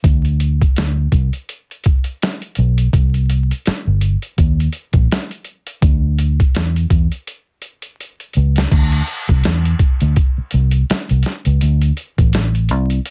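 A dry, densely limited mix dusted with vinyl crackle frames this sultry, introspective neo-soul R&B excerpt, where a gritty, pitched-down boom bap drum kit with a thumpy kick, medium-tuned snare, hi-hat and crash sits up front beside a dark, round, foam-muted fingered electric bass, both playing throughout with a lightly swung sixteenth feel, and a drum fill from 7.3 to 8.7 seconds leads into a new section.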